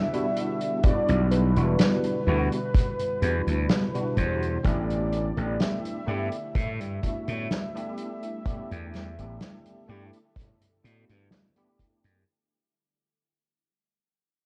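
Worn, warbling cassette tape and a small room's ambience colour this woozy, nostalgic vaporwave fragment, which begins fading out at 2.1 seconds as it drifts between Em9 and A7sus4. A velvety, detuned synth lead carries the melody with chorus, vibrato and tape echo until 11.3 seconds, over bell-like tine electric piano accompaniment in ensemble chorus and a very quiet, mellow pad that warbles softly. From 0.8 seconds a growly, overdriven slap bass and a punchy kick sit up front, joining a distant, roomy soft-mallet kit that entered at 0.1 seconds, whose hi-hat and snare have a rolled-off top and 12-bit sampler grit.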